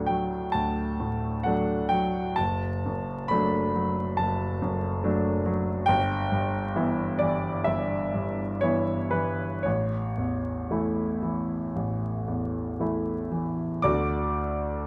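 Close, detailed microphones catch a clear, present grand piano set up front in a moderate recital hall, with a bed of vinyl crackle beneath it. This hopeful, lyrical romantic character piece for solo piano unfolds in a flexible rubato, its harmony moving from D through Em/G to A before settling back on D at 13.8 seconds. The passage is cut from a longer piece.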